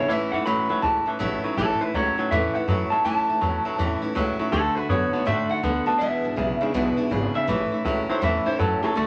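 Upbeat and rollicking, this rock excerpt in A major moves at 162 BPM in 4/4 with a swing on the eighth notes, cycling through A, D and E7 before landing back on A at 7.5 seconds. A slightly broken-up, twangy electric guitar through a small old amp carries the melody, while a bright, compressed clean electric guitar recorded direct sits up front with a picked riff, and a steel-string acoustic guitar picks out accompaniment with audible finger squeak. Underneath, a woody, thumpy pizzicato upright bass on gut strings adds a dark low end from 0.1 seconds, all set in a moderate studio reverb.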